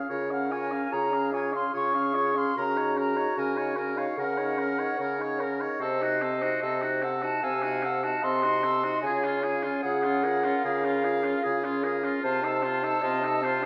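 Moving freely at 74 BPM in 4/4 with gentle rubato, this lyrical, tender slow romantic movement for wind quintet in Db major, cut from a longer piece, sets an airy, crisp-attacked silver flute melody with straight tone high above a lightly vibrating oboe second line, punchy French horn and smooth-topped clarinet accompaniment, and an up-front mellow bassoon bass entering at 0.1 s, all carried by a reverberant recital hall as the harmony passes through Ebm7/Db and Cdim7 before settling toward F7/C.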